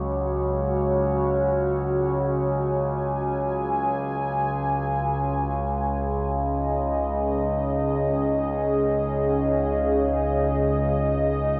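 From the first second, a resonant sawtooth-and-sine drone with moving overtones, low in the register and softened by chorus, sits beneath a moody, detuned analog pad with a sub octave, holding a sustained C#5 chord through the full 11.6 seconds of this unsettling dark ambient drone fragment in free time, with both parts swelling in slowly, kept up front, and bathed in a huge, wet reverb with a 7.7-second tail.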